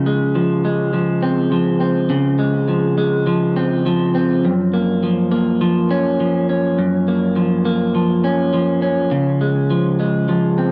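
An electric guitar played through a small old amp carries this short excerpt entirely on its own. Its picked tone sounds slightly broken-up and compressed, sitting up front and touched with subtle chorus, a vibrato effect and analog delay. This is laid-back, dreamy indie pop at 103 BPM in a straight 4/4, set in Db major. The guitar stays between Gb2 and Db4, moving from Dbmaj7 to Gbmaj7 at 4.4 seconds and settling on Db at 9.1 seconds before the clip ends at 10.7 seconds. A light reverb surrounds the dry, gritty hardware recording.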